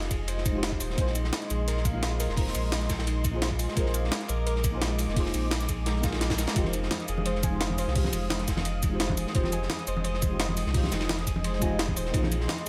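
A dreamy, lush slice of liquid drum and bass at 172 BPM in F dorian opens with a deep, mellow chord stab drenched in chorus, phaser and dub echo, set over an airy, breathy pad that pumps with sidechain and a round, saturated sub bass sitting up front. Two breakbeat kits drive the groove: a gritty, pitched-up sampler-style kit with a high-tuned snare, cabasa and hi-hat pushed forward, and a darker, crunchy acoustic kit with smooth, rolled-off cymbals, ride and a medium-tuned snare tucked behind it. A thumpy, compressed electronic kick and a ringing, harp-like synth pluck playing chorused, echoing arpeggios in the background join almost at once. The harmony sways between Fm7 and Bb9sus4, and a drum fill at 6.2 seconds leads into soft-handed, vintage-toned congas entering at 6.6 seconds. The mix is dry overall, with only studio reverb on the drums, and the passage is cut from a longer piece.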